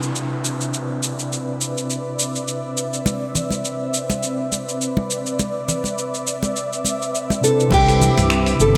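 A smooth, blissful sunset chillout clip opens on a mellow tine electric piano with digital delay, a lush, detuned unison pad with chorus and a dusty soul sampler-style kit of cabasa, finger snaps, hi-hat, toms and crash cymbal. The gritty, overdriven drums sit up front and carry a gated reverb, while an electronic downlifter sinks beneath them until 3.1 seconds and a filter sweep works through an analog synth pad. Close, dry congas with hard hands join at 3.1 seconds, adding a swung pulse in 4/4. Near the end, a fingerpicked nylon-string guitar steps forward with a short melody at 7.4 seconds, its notes echoed by digital delay, and a fretless electric bass and a punchy, overdriven electronic kick drum arrive as the closing section begins. The clip starts on a Cmaj9 chord and sits in a moderate lush hall reverb, with a bright 1980s-style digital sheen.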